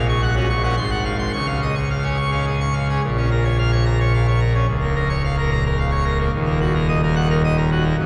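A long, wet cathedral reverb with a decay of 7.7 seconds fills a church or concert hall around a solo pipe organ, placed up front on full organ with bright mixtures and a baroque voicing. This jubilant classical toccata in triple metre, cut from a longer piece, has a majestic and brilliant tone that spans from the deepest bass to the high treble. At 3.0 s the music moves into a new section and settles onto a minor-key harmony.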